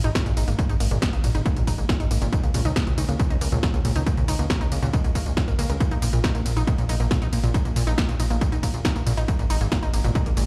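A detuned, wave-folded unison pluck spins Bb minor arpeggios from Bb2 to Bb4 through tape echo and sidechain pumping, giving this driving, soaring uplifting trance passage, cut from a longer piece, its lush shimmer at 138 BPM in straight 4/4. Beneath it a funky sawtooth-and-square analog bass with a fast-attack filter pluck pumps between Ab1 and Db2, while an overdriven electronic kick, entering at 0.2 seconds, anchors a punchy analog drum machine of snare, hi-hat, ride, and tambourine whose hats, cymbals, and percussion breathe with the sidechain. The drums ring out as if replayed in a large, bare room, over chords moving from Ab5 to Dbsus2 and Bbsus4 before dropping out at 9.3 seconds.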